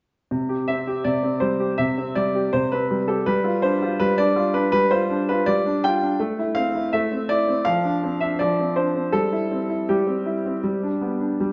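The recording sits in a wet recital hall, its reverb lingering for about 1.6 seconds, and the sound tops out at 7.6 kHz. This is a graceful, cheerful classical-period piano sonatina in C major, in 4/4 at 81 BPM, played with a rubato feel and tuned to A4 = 437 Hz. A single concert grand carries the music from 0.3 to 11.5 seconds. Its tone is clear and open with a deep bass, and it sits up front against the hall while ranging from C3 to G5. The harmony moves from C5 to G5, then to A minor at 6.2 seconds, Dm7 over F and C over G, before closing on G in this passage cut from a longer piece.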